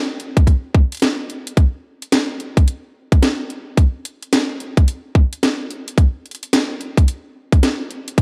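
Swaggering and funky, this short glitch hop excerpt rides a swung sixteenth-note feel in 4/4. A drum kit of hi-hat and snare comes in at 0.2 seconds, its cracking snare and bright hats overdriven, layered and up front. At 0.4 seconds an electronic kick drum joins, tight and overdriven, sitting loudest in the mix. Both parts carry on to the close at 8.2 seconds, holding a single section throughout. Light reverb and a digital ambience frame the dark, warm production, giving the beat a compact, gritty presence.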